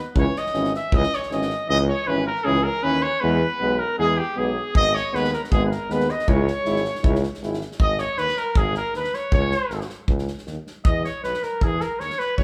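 A roomy, up-front trumpet carries the melody in this virtuosic, bittersweet Balkan brass band piece, opening with a brief solo. A clear tuba bass and a punchy, airy acoustic drum kit sit beneath it in 2/4. A vintage-toned clarinet second line enters at 1.7 s, while a soft-attack French horn with light vibrato and a distant euphonium add background accompaniment until 7.6 s, the band sounding live in a moderately reverberant large studio.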